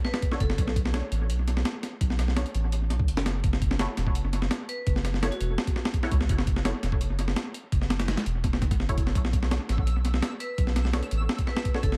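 A gritty, compressed breakbeat kit with a thumpy kick and tape-warm grit opens this dark, nostalgic drum and bass excerpt at 168 BPM in B minor, joined at once by brief phrases of metallic, ringing vibraphone struck with hard mallets, sitting in the background with analog delay. A round, deep sub bass arrives at 0.4 s and holds up front, while muted, detuned chord stabs with a filter pluck drift through phaser, chorus and dub echo over Bm7 and F#m7. From 9.7 s a twinkling granular shimmer fades in faintly behind the echo-heavy mix, which is dusted with vinyl crackle and carries little reverb.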